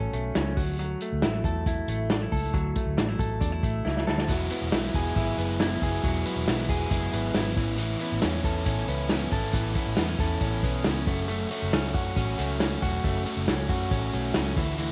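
A clean, compressed electric guitar picks warm arpeggios up front over a muffled, lo-fi vintage drum kit with a punchy kick and a round, foam-muted fingered bass in this breezy jangly indie pop excerpt, where a drum fill at 3.9 seconds ushers in a crunchy overdriven guitar at 4.3 seconds as the chords move from F#m through Dadd9, Eadd9 and Aadd9 in a small, lightly reverberant room.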